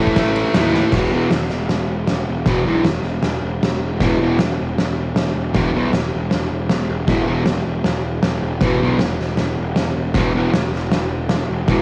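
A double-tracked, picked fuzz guitar drives the riff up front from the very start of this swaggering, rowdy garage rock excerpt, its compressed tone pushed through distortion and a cassette tape effect. A growly, overdriven picked bass with its own fuzz sits just as close, while an oversized, low-tuned acoustic kit with a fat snare, punchy kick, gritty crash and ride enters at 0.1 seconds and plays a fill at 0.7 seconds before the main section kicks in at 0.9 seconds. It all rides a straight 4/4 in the moderate ambience of a booth, captured as a home recording on cassette.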